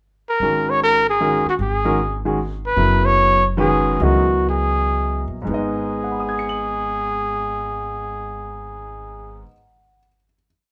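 A breathy, mellow trumpet leads this short, complete jazz waltz, playing a motif-based solo melody of hook phrases in a mid register, with scooped notes and a smooth top, placed up front from 0.3 seconds. Beneath it, a concert grand piano with deep bass and a natural tone comps in syncopated quartal voicings, also up front, ringing on until 10.4 seconds. A woody, pizzicato upright bass on steel strings holds down a two-feel line in the low register. The mood is searching and intense, with a swung feel in triple metre over suspended chords that drift to a resolving minor chord. After a brief pickup, the tempo slows from 2.8 seconds, and the piece settles onto a held final chord at 5.5 seconds. Moderate studio reverb frames the group, and a faint mains hum sits under the sound.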